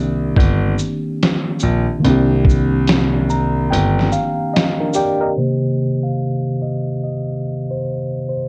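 A mellow tine electric piano and a smooth grand piano bass open this reflective, melancholic lo-fi hip hop excerpt in C minor at 72 BPM on a Cm9 chord, with the electric piano's cassette-tape, filtered tone sitting in a small-room reverb. A muffled sampler-style kit with a thumpy kick, medium-tuned snare, hi-hat, shaker and 12-bit grit swings its 16ths from 0.4 seconds while the electric piano adds a fill. The bass stops first, a break begins at 3.7 seconds, and the drums drop out at 5.2 seconds. From 5.4 seconds the electric piano plays alone, soloing over Cm7 through a filter sweep.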